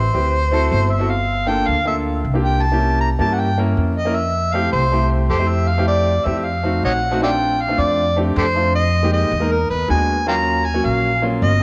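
A gritty, amplified harmonica opens with an up-front jazz solo full of vibrato, tongue slaps and scooped notes over a woody, pizzicato upright bass, joined at 0.1 s by a smooth, vintage grand piano, as the trio plays a sophisticated, danceable straight 4/4 at 157 BPM in F major, moving from D7 and Gm9 through C7b9 to Fmaj7 and F7b9 before shifting at 7.2 s to Bbmaj9, Fm11, E9 and Ebm9, all inside a moderate echo chamber reverb.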